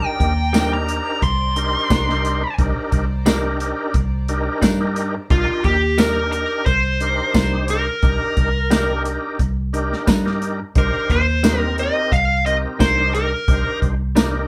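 This smoky, soulful slice of straight-eighth soul blues, cut from a longer piece, opens with a dark, overdriven lead guitar taking a solo up front. Beneath it sit a thick tonewheel organ with key click, chorus vibrato and a slow rotary speaker, a round, foam-muted fingered bass, and a very quiet, distant bowed chamber string section with light vibrato. A soul drum kit with a punchy kick, a medium-tuned snare, hi-hat and tambourine, its top rolled off, joins almost at once, along with a bright, compressed clean electric guitar playing stabs. The strings stop at 5.3 seconds, where the solo ends and the piece moves into a new section. The lead guitar carries on until 13.8 seconds, while the rest of the band plays on in a small room with moderate reverb, giving it the feel of a live, intimate take.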